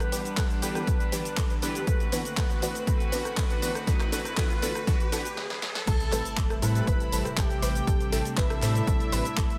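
A straight 4/4 pulse at 120 BPM drives this dreamy progressive house piece in A minor. A punchy, overdriven electronic kick sits up front from 0.4 seconds, joined by a deep house kit of hi-hat, snare, rim click, handclaps, cabasa and crash cymbal, its hats, percussion and cymbals pumping to the sidechain. A round, deep analog bass anchors the low end, while a distant, sul tasto string section holds sustained chords that also pump. Over them, a detuned sawtooth supersaw stab and a soft, dark pluck playing arpeggios in the background both carry dub echo, and the pluck is thickened with chorus. A vintage, warbling lead with portamento and vibrato sings the melody through chorus and echo. The opening build-up moves from Em7 to D7 under filter sweeps on the pluck and supersaw, with a very quiet riser and sub drop, then a drum fill and a stop just before the drop at 5.9 seconds lands on Am7 with an impact, where a smooth supersaw second line with phaser enters in the upper register, all set in light reverb and digital ambience.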